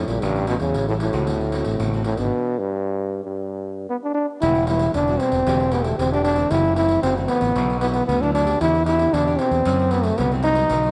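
This joyful, sunny samba and choro piece opens with a trombone carrying the melody up front, over fingerpicked nylon-string guitar and a growling, overdriven electric bass, with a jingly pandeiro joining at 0.1 s. At a straight 115 BPM in 4/4, it starts in G major, moving through A7, D7 and G6 before a stop at 2.3 s. At 4.4 s the harmony turns to E minor, passing through Emadd9, F#m7b5, Bsus4 and Em7 before reaching F#dim. The trombone plays in a jazz style with a warm tone, light vibrato and scooped notes, while the classical guitar sits in the background, its finger squeaks audible and both parts carrying a cassette tape coloring. The fingered bass is punchy and amped, the pandeiro sounds distant, as if in a large room, and the whole home cassette recording, cut from a longer piece, has light reverb and small room ambience.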